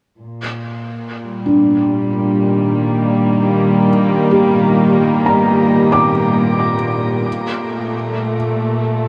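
A steady, straight 4/4 pulse moves unhurriedly beneath this reflective, spacious ambient passage, which is cut from a longer piece. A chamber string section opens at 0.2 s with sustained, bowed chords, its gut-string, period-style tone sitting up front, dark and nasal with a reedy edge and a smooth top. At 1.5 s a felt-muted upright piano joins with soft, mellow arpeggios in a higher register, its thick felt and audible action noise lending an intimate, natural quality, and its notes are carried by tape echo. The harmony rests on Ebmaj7 over Bb before settling onto Bbmaj7 at 7.3 s. A wet shimmer reverb with a long tail bathes the whole recording in a dark, warm production.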